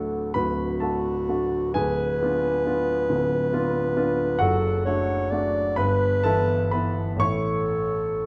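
Swaying in a rubato 6/8 at 40-46 BPM, this tender, serene romantic classical duo in D major sets a dark solo clarinet singing the melody over an up-front concert grand piano with deep bass, both heard close and detailed in a moderate recital hall reverb as the harmony moves from D through Ddim7 and Em/G to A by 7.2 seconds.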